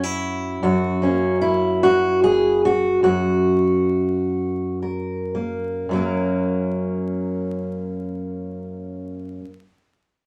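A fingerpicked steel-string acoustic guitar sits up front, its fresh strings giving a warm tone as it plays alone in this gentle folk fragment cut from a longer piece. In a rubato 6/8 at roughly 35-52 BPM in dotted quarters, it moves from F#5 to F# in F# mixolydian, tuned to A4 = 439 Hz, and slows down between 0.6 and 5.9 seconds before a new section takes over. A wet studio reverb and a layer of vinyl crackle surround the guitar.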